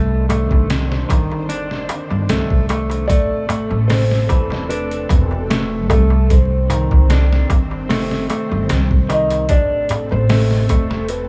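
A gritty, pitched-down sampler-style drum kit with a thumpy kick sits up front in this dark, smoky trip hop excerpt, alongside a woody pizzicato upright bass, a crisp, dry metal-shell darbuka, clean arpeggios from a semi-hollow electric guitar through tape echo, and mellow, chorused string-machine cellos holding sustained chords in the background, while a soft, felt-muted upright piano with audible action noise enters with the melody at 3.1 s through dub echo, all wrapped in small room ambience and vinyl crackle over minor chords.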